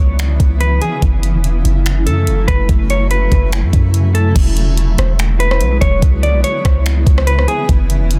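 Melancholic and hazy, this atmospheric cloud-rap excerpt moves in a half-time feel, with a blurred, evolving granular pad sustaining chords under sidechain pumping and its own reverb while a dark, clean electric guitar plays a fingered melody through a low-pass filter and tape echo until 7.7 seconds. A deep, boomy 808-style bass with a sine tone and noise layer sits up front beside an electronic R&B drum kit that enters at 0.2 seconds, its knocking kick, finger snaps, hi-hat, rim click and crash cymbal re-recorded in a small room, with soft clipping on the snare. The chords drift from C#m7 and F#m7 to E9 and back, and the dry, dense, heavily limited master keeps the sound close.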